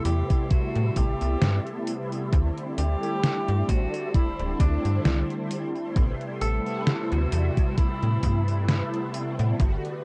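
Mellow, brassy synth chords with phaser, chorus and analog delay open this nostalgic, melancholic vaporwave fragment together with a silky string machine in the background, carrying a slow 66 BPM swung groove in A dorian over Am7, D7sus4 and back to Am7. A bright alto saxophone carries the jazz-style melody with vibrato, subtone and scooped notes through tape echo. Up front sit a snappy, metallic FM slap bass with tube saturation, a thumpy electronic kick, and a gritty, detuned 8-bit drum machine playing hi-hat, snare and tambourine, all within a dark, cassette-toned digital ambience.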